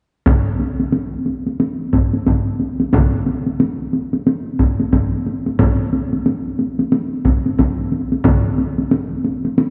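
A swung 16th-note groove in 4/4 drives this ceremonial, powerful excerpt of Japanese traditional taiko music, where heavy-stick solo taiko drums with a close, small-room sound sit up front beside a hard-stick taiko ensemble with a vintage, band-limited tone that drops out at 8.4 seconds, leaving the solo drums ringing until 9.7 seconds in a wet concert-hall reverb.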